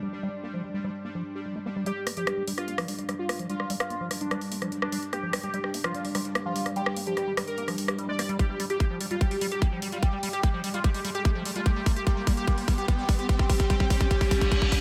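Intense and driving, this psychedelic trance excerpt at 147 BPM opens with a squelchy, resonant acid bass riff, a pulsing gated texture of sustained chords and a deep, moody ambient pad in the background, all breathing with sidechain pumping. At 1.9 seconds a bold, detuned unison lead enters with phaser and delay, alongside a techno kit of tape-warm hats and rim clicks, as filter sweeps on the bass and texture drive a build-up joined by a background riser from 5.1 seconds. A tight, up-front electronic kick and drum fill arrive at 8.4 seconds, and a reverse cymbal closes the build under light reverb.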